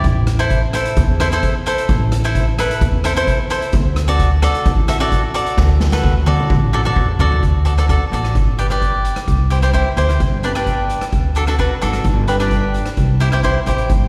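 A bright, crisp picked cavaquinho with slapback echo sits up front as woody, thumpy pizzicato upright bass on gut strings and an airy, polished street-band drum kit with a boomy kick and medium-tuned snare start together in this bouncy, festive 130 BPM calypso excerpt, where a drum fill from 5.6 to 7.4 seconds leads into a second section, all heard as a live gig through the venue's PA with recital hall reverb.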